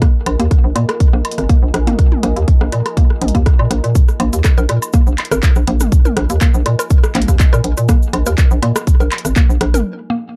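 A punchy, tape-warm electronic kick sits up front in this hypnotic, cool minimal techno excerpt at 122 BPM with a light swing, joined by a hollow, bouncy FM bass, a woody mallet-like synth pluck riff with chorus and delay, handclaps and hi-hat from a house kit, an overdriven organic kit of rim clicks, toms and woodblock, a deep, moody pad with reverb and sidechain pumping in the background over a Bbsus4 chord, and a grainy, bright cabasa entering at 4.0 s, all in a dark, dry production that moves into a brief break at 9.9 s.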